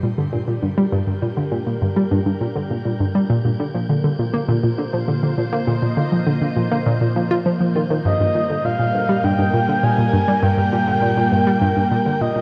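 Ambient, sequencer-driven space music with a mysterious, hypnotic pull, moving in a straight 4/4 pulse through a short passage cut from a longer piece. An up-front analog pluck carries a riff throughout, its round, detuned tone sharpened by ring modulation and a filter sweep, with chorus and analog delay trailing each note. Behind it, a lush string machine fades in with sustained chords, its vintage ensemble chorus and shimmer reverb giving a mellow glow, while a dark, wind-like tuned noise texture hovers high above as it also fades in. At 8.1 seconds a breathy, flute-like synth lead enters with a soft melody touched by vibrato, as the harmony settles from Gm through Bbsus4 to Gm7. The echo-heavy mix sits in a wet chamber reverb before fading out from 11.2 seconds.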